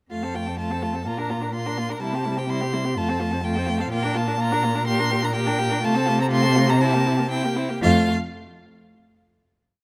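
The first violin leads from the front with a rich, smooth melody, played by one bowed player with light vibrato in a high register. This quick, cheerful and graceful classical-period movement for string quartet is in 4/4 with uneven beats. Beneath the melody, the second violin and the viola each play a rocking two-note figure and sustained chords, the second violin even and vibrato-laden and the viola warm and expressive with portamento. The cello also sits up front, giving a soft-attacked, expressive sustained bass with vibrato and portamento. All four players sound together from 0.1 s to 8.1 s, and the harmony moves through simple tonic, subdominant and dominant chords before settling on a final chord at 7.8 s. Close, detailed microphones and light reverb give this complete short piece an intimate, clear sound.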